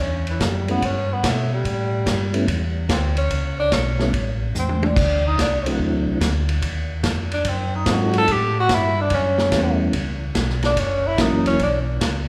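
A distant, roomy tenor saxophone takes a bluesy, greasy solo with subtone, vibrato and scooped notes in this swinging soul jazz organ trio excerpt at 145 BPM in A mixolydian, moving through A9, D9, D#dim7, Bsus2 and F#7 before arriving on Bm. A round, dark tonewheel organ carries the bass with key click through a slow rotary speaker, while a second, flute-like organ with second harmonic percussion and chorus vibrato joins on melody at 0.7 s. The gritty, saturated vintage drum kit sits up front with dark cymbals and a punchy kick, adding a fill at 4.6 s, and the trio rings in a recital hall reverb.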